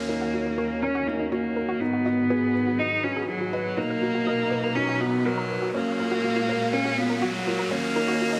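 Hypnotic and intimate, this piano and strings electronica passage moves at 122 BPM in a straight 4/4 in Eb minor, a short section cut from a longer piece that builds for its full 8.4 seconds. A bright, biting solo cello sits up front carrying the melody with light vibrato and an airy bow, while a low-pass filter sweeps across it through the build. Around it, a dark, woody studio string section holds lush bowed chords, and a felt-muted upright piano plays a soft, mellow riff with its action noise audible. An analog pluck enters at 0.1 seconds with round, detuned arpeggios coloured by chorus and tape echo, tucked into the background, as an electronic riser climbs alongside. The harmony cycles from Ebm7 through Abm7, Bmaj7 and Gbmaj7/Bb back to Ebm7, all set in a moderate echo chamber reverb with small room ambience and a filter sweep running over the whole passage.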